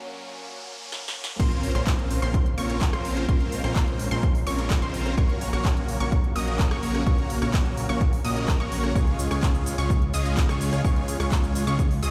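Festival progressive house in Bb minor at 127 BPM, anthemic and euphoric, this excerpt opens on a brief build-up where a very quiet, dark baby grand piano, a lush nasal pad with chorus and a background riser set the scene before a drum fill at 0.9 s. The drop lands at 1.4 s with an impact, a punchy up-front electronic kick and a big-room kit of crisp hats, snare, handclaps, rim click, cabasa and crash, while a huge, detuned supersaw lead with phaser and dub echo carries the riff over a fat, saturated analog bass. A detuned pluck plays high arpeggios with dub echo in the background, the pad, pluck, lead and bass all pump against the kick, and the dry mix sounds played through a big sound system in a bare stone room, moving through Bbmadd9, Gb/Bb and Db.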